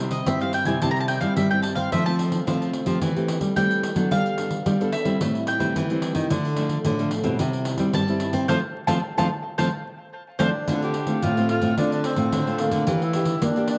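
A round, double-strung mandolin with tape echo carries the melody up front in this joyful, lively samba and choro excerpt at 110 BPM in F major. It is backed by a bright, full-bodied fingerpicked nylon-string guitar with audible finger squeak, a second warm, fingerpicked nylon-string guitar on the bass line, and a jingly pandeiro in a live room. A breathy, mellow tenor saxophone enters at 10.4 seconds, and from 10.7 seconds it takes a distant, intimate jazz-style solo with vibrato and scooped notes as the music turns to D minor, all set in moderate spring reverb and small-room ambience with a layer of vinyl crackle.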